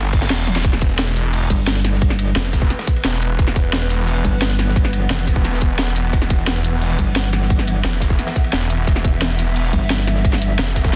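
A snarling, distorted saw bass growls up front through this dark, mechanical technical drum and bass excerpt at 175 BPM in E phrygian, joined at 1.5 seconds by a metallic, chorused wobble bass, while a tight layered electronic kick, a drum and bass kit with a cracking snare, toms and crash, a gritty, rolled-off breakbeat kit in the background, a very quiet reverse cymbal and zap, a drum fill at 0.5 seconds and a swarming, granular drone pumping from 2.3 seconds build a tense, futuristic, heavily limited wall of sound.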